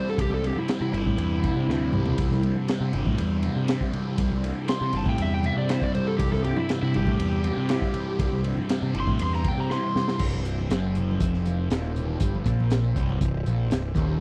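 An overdriven, dark slide guitar carries the solo melody with slapback echo until 10.2 s over a hypnotic, trippy psychedelic rock groove at 120 BPM in C major, driven by a double-tracked, up-front fuzz guitar riff with phaser, a warm fuzz-drenched picked bass, a crunchy breakbeat kit with a high-tuned snare, punchy kick and rolled-off top that plays fills at 1.7 s and 9.7 s, buzzy combo organ chords with heavy vibrato and subtle chorus in the background, and very quiet, bright congas, all captured in a dry, close 1970s-style studio sound.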